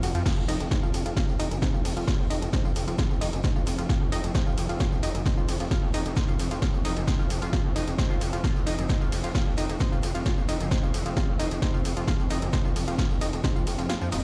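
Driving peak-time techno at 132 BPM in a hypnotic, straight 4/4 groove, where an up-front layered electronic kick pounds from 0.3 s under a gritty, saturated oscillator-sync synth bass, a round, chorused analog pluck riff with delay, a swarming, detuned granular drone in the background, an overdriven analog drum machine with punchy snare, hats, ride, crash and tambourine, and a very quiet, dry 70s kit of hi-hat, shaker and snare, with sidechain pumping on the bass, pluck, drone and the drum machine's hats, cymbals and percussion, all set in a large studio reverb like a big sound system in a bare room before the kick drops out at 13.9 s.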